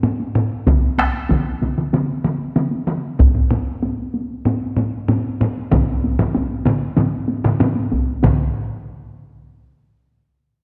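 A taiko ensemble, one layer struck with hard sticks and pushed up front with compressed, saturated punch, the other close and dry under heavy sticks, joins at 0.7 seconds and drives this ceremonial, powerful Japanese traditional drum piece at 95 BPM in a straight 4/4. Two solo taiko drums open at 0.0 seconds: one played with heavy sticks has a vintage, band-limited tone, while the other is hit with hard sticks and sounds squeezed and gritty. The dark production sits in a scoring-stage reverb with a 1.9-second tail, and this excerpt is cut from a longer piece, with the drums stopping by 8.8 seconds.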